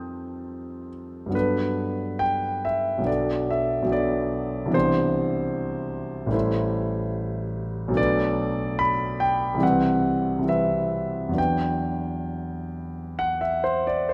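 Serene and luminous, this fragment of a longer impressionist classical piece features a solo concert grand piano at 72 BPM in 4/4, moving with an unhurried rubato and uneven beats across rich extended harmonies such as F9, Gmaj9, Cmaj9 and a closing Em9 at 11.4 seconds. The piano spans from deep bass notes up into the high treble, with an intimate, polished tone, long sustain and the mechanical noise of its action audible up close. A moderate scoring-stage reverb adds a gentle halo around the instrument across the full 14.1 seconds.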